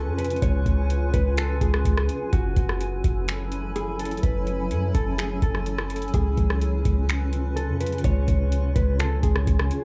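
Atmospheric cloud-rap hip hop in F# minor at 126 BPM with a half-time feel, this melancholic, spacious excerpt drifts over C#7 and F#m7 chords in a small room. A blurred, granular cloud pad holds sustained chords, drenched in its own reverb and pumping from sidechain compression, while a dark, clean electric guitar carries a compressed, fingered melody through tape echo. An up-front, boomy 808-style sine bass and a booming analog drum machine, entering at 0.2 s with a deep kick, metallic hats, finger snaps and rim clicks roughened by 12-bit sampler grit, anchor the haze.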